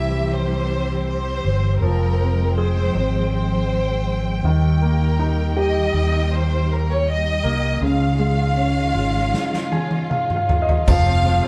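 This heartbroken pop ballad opens with a lush, bowed violin section carrying the melody over a clear, polished baby grand piano, a smooth-topped string section holding sustained chords, and a growly, punchy fretless electric bass sitting up front. The violins have a soft attack and expressive vibrato, while the strings add an ensemble cushion beneath them. The harmony moves from C through Fmadd9, Eb and Dbadd9 before settling on F minor at 10.9 seconds, giving the passage a yearning, emotional pull. At 9.3 seconds a loose, acoustic indie drum kit arrives with a fill of crash, kick, snare and toms, joined by a piano fill at the same moment, both ending at 10.9 seconds. The band sounds like it is playing live in one room, bathed in a wet studio reverb, and the passage is cut from a longer piece.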